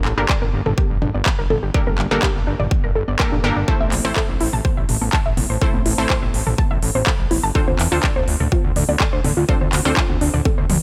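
Euphoric and uplifting, this progressive house excerpt moves at 124 BPM in a straight 4/4, passing from Gmadd9 to Am at 3.7 seconds and Dm7 at 7.6 seconds over a punchy, tape-toned electronic kick up front and a layered big-room kit with crisp hats, handclaps and toms, while electronic congas and toms sit in the background with a large-room ambience. A fat, detuned sawtooth analog bass with tube saturation and sidechain pumping holds the low end, and a lush, detuned unison pluck plays bright stabs with dub echo and pumping. Above them, a crystalline, warbling wavetable pluck spins arpeggios with chorus, ring modulation and a filter sweep, all in a dry, close mix.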